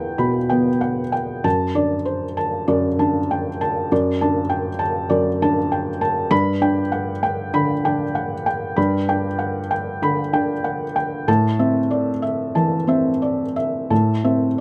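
Rubato phrasing in 4/4 shapes this reflective, melancholic neoclassical minimalist fragment, cut from a longer piece and played by a lone felt-muted upright piano across its full 14.6 seconds. The piano sits up front, soft and mellow with a short sustain, spanning E2 to B5 as the harmony moves from Em through D/F# and G to Am at 11.3 seconds. Close, detailed microphones and light reverb give the sound an intimate presence.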